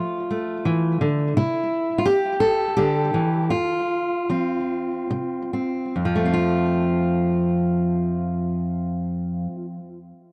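A fingerpicked steel-string acoustic guitar plays solo from the start: a peaceful, nostalgic folk piece in 3/4 and F major at 69-86 BPM, with a warm auditorium tone placed up front and a touch of tape echo. The harmony moves from Dmadd9 to C and F5 while the pace slows between 1.4 and 5.9 seconds, and a new section then settles on F. Light reverb and a dry, close 1970s-style studio sound frame this short fragment cut from a longer piece.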